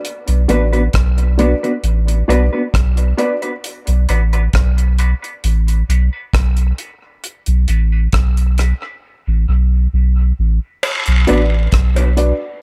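Dub reggae in B minor at a meditative, spacious 67 BPM, this excerpt rests on a round, soft sub bass sitting up front, a dry acoustic drum kit with a tight kick, crash, hi-hat and rim click, and a clean, compressed electric guitar that is dark and fingered, treated with a high-pass filter and dub echo. A woody, slightly detuned upright piano with audible action noise adds mellow, vintage stabs through the same filtering and echo. A filter sweep runs through the first 10.8 seconds, the drums drop out between 9.0 and 10.8 seconds, and a saturated cowbell and jawbone-type rattle enter with dub echo at 10.8 seconds, shortly before the piano returns, all under a light reverb.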